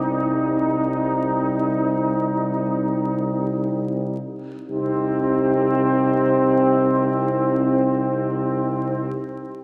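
Classical brass-band hymn in free time, yearning and melancholic, where a vintage-toned, mellow trumpet section carries the melody up front with light vibrato over a French horn section's background second line, a punchy yet distant, roomy euphonium and a very quiet, close-miked, clear trombone fill the accompaniment, and a warm tuba holds a vibrato-tinged C2 bass, the whole set in a wet church reverb with vinyl crackle.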